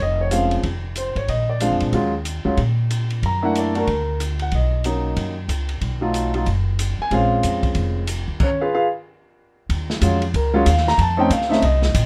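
A brisk 185 BPM swing in 4/4 drives this smoky, late-night jazz piano trio excerpt in Bb minor, cut from a longer piece, with a boomy-kicked drum kit of dark cymbals entering at 0.3 s behind a woody pizzicato upright bass played up front. A clear, natural concert grand piano with deep bass carries the melody over rich harmony such as Bbm9, Gb7alt and Bmaj9, reaching a chordless break at 9.0 s before a new passage at 9.7 s moves through Ebm11 to F7b13. Light reverb lends the group a touch of space.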